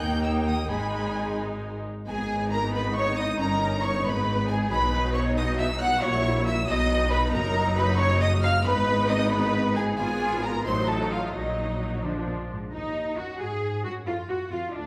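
In a 6/8 with a straight pulse, this quick classical-period movement for string orchestra is cut from a longer piece and carries a restless, dramatic mood from its opening bars. A clear, intense chamber violin section carries the melody, its vibrato bowing reaching high, while a second violin section, rich and focused but set at a distance, traces a supporting line beneath it. Violas fill in the accompaniment with a lush, focused tone, and the cellos, close, smooth and even, join a distant double bass section of smooth richness and light vibrato to anchor the bass. The harmony shifts into a new minor key at 7.3 s, passing through diminished and altered dominant chords that heighten the tension before the opening material returns at 12.7 s. All five sections play throughout, bathed in a wet recital hall reverb that lends the ensemble a sense of space.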